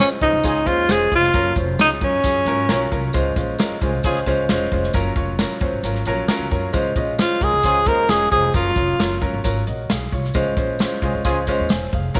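A breathy, whispered tenor saxophone with scooped notes and vibrato sings up front in two short phrases, from 0.0 to 2.9 seconds and again from 7.2 seconds, over a brilliant upright piano, a woody, thumpy pizzicato upright bass, an airy swinging big-band drum kit with a punchy kick, a jingly tambourine, and brief, softly vibrato horn-section lines in the background carrying slapback echo, giving this danceable, uplifting 1960s-style soul excerpt a polished glow within moderate spring reverb.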